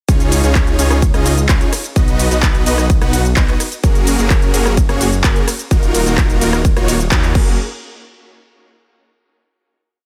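The piece opens straight into a drop at 0.1 s, with the full arrangement arriving at once: an up-front, punchy, overdriven electronic kick drives a four-on-the-floor pulse at 128 BPM in 4/4, with a straight, uplifting and triumphant feel in F# major. Huge, lush supersaw chords carry the riff in a dotted rhythm with close voicing, their bright, detuned unison tone pumping against the kick through sidechain and trailing a tape echo as they move through C#add9, B, F#add9 and D#madd9. Beneath them, a thick, beating detuned saw bass with a menacing edge and a mellow sine underside follows the chord rhythm, also pumping with the sidechain. A layered big-room kit adds metallic programmed hats and a programmed backbeat, along with clap, rim click, shaker, ride and crash, all overdriven. The band hits an accent at 7.1 s before landing on F#add9, and the piece closes on a final hit from 7.6 s to 9.5 s, in a dry mix with little reverb.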